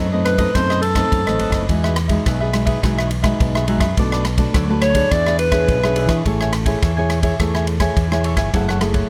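Closely miked and nearly dry, this lively, joyful samba-choro fragment in E major moves at 105 BPM in a straight 4/4, with chords shifting from B7b9 through Emaj9 and E6 to Amaj7 and F#m9. A mellow alto saxophone leads with a soft-attack subtone and light vibrato, playing a jazz-style solo from 0.2 to 6.2 seconds. Beneath it, a crisp picked cavaquinho and a thumb-plucked classical nylon-string guitar comp, a direct, warm fingered electric bass holds the low end, and an airy, polished big-band drum kit swings with a punchy kick, ride cymbal and rim clicks.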